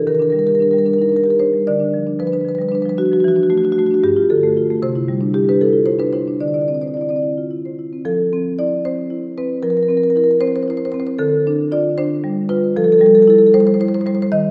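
Swaying in a straight 6/8 at 76 BPM in dotted quarters, this hypnotic, reflective excerpt from a contemporary classical piece for solo marimba sets woody rosewood bars struck with medium mallets up front, ranging from G2 to Eb5 through extended harmonies such as Ebmaj7, Gsus2 and Cadd9 before a second section from 8.0 seconds settles on Fmaj7, Dm7 and Fmaj9, all bathed in the long, wet reverb of a concert hall.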